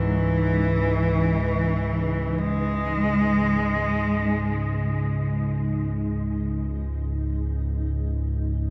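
In free time, this desolate, cavernous dark ambient drone in C# minor sets a nasal, chorused analog drone with a filter sweep beneath a blurred, cloudy granular pad holding a C#madd9 chord, while a single bowed cello sings an expressive line with vibrato and portamento through a diffuse delay until 5.0 s, inside a huge, wet reverb.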